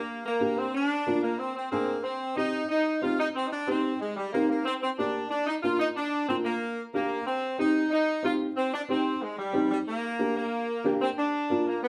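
A wet studio reverb wraps this short, fiery and danceable Latin cut in C minor at 184 BPM, where a bright, up-front saxophone section carries the melody with vibrato and a smooth top over a dark, woody upright piano that sounds worn and slightly detuned, its action noise audible as it accompanies from 0.4 seconds.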